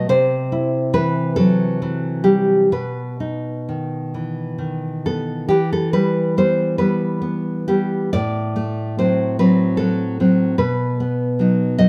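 A fingerpicked nylon-string guitar plays alone, full-bodied and up front, in a melancholic, intimate romantic piece for solo classical guitar that moves in a loose, rubato 6/8. Its harmony drifts from C to B, then a second passage from 5.5 seconds passes through Em and F#dim/A before coming to rest on B. Close, detailed microphones and light reverb keep the instrument near and personal in this short fragment of a longer work.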